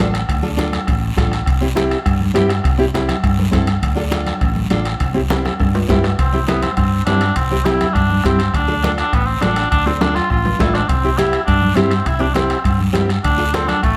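Festive, danceable cumbia at 204 BPM in a cut from a longer piece, where an up-front fingerpicked nylon-string guitar with fresh strings and audible finger squeak sways between Dm and C over a dark, round, punchy hollow-body electric bass, with a raspy close guiro, ringing metal-shell timbales and ringing congas in the background, and a soft-beater bombo sounding distant in a large room, until a drum fill at 5.3 seconds leads to the entrance of a warm, smooth-topped cor anglais at 6.2 seconds, played up front in a classical style with light vibrato, all set in moderate studio reverb.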